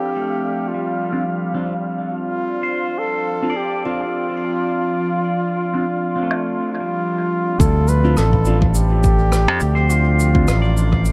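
A hazy concert-hall reverb hangs over this deep ambient dub passage in D minor at 104 BPM, where a veiled, bucket-muted trumpet with light vibrato carries the melody up front through dub echo, over a warbling, nostalgic tape-like pad with chorus sustaining a Dm7 chord. Bright pedal steel arpeggios with slide, a dark, clean electric guitar with phaser stabbing in the background, and a very quiet, breathy wind-like texture fill out the opening. At 6.3 seconds a warm, rolled-off woodblock, cabasa and rim click enter with echo, and at 7.6 seconds a deep layered electronic kick and a bright, direct fingered electric bass arrive as the wind texture drops away, before this fragment of a longer piece ends.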